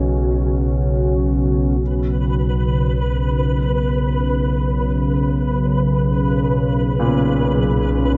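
Drenched in a huge, dark reverb that tops out early, this desolate, ominous dark ambient drone drifts in free time around a Bsus2 chord, with an up-front warbling analog drone and a deep, detuned pad sustaining alongside warm grand piano arpeggios, while a grainy, flickering texture joins at 1.9 seconds in this fragment cut from a longer piece.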